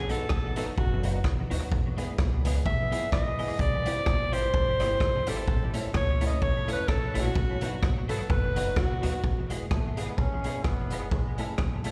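A breathy, intimate alto saxophone carries the melody up front in this cheerful, upbeat ska cut at 128 BPM in E major, soloing with tape and slapback echo until 9.2 seconds, after which a bright, distant trombone enters on the melody at 9.7 seconds. Beneath it, a gritty, saturated garage drum kit with a boomy kick, hi-hat and rim click drives a lightly swung 4/4 feel, while a woody pizzicato upright bass, a twangy clean electric guitar with ensemble chorus, and a dark, mellow upright piano playing stabs sit in the background. The band sounds like a live gig heard through the venue's PA, with recital hall reverb and a layer of vinyl crackle.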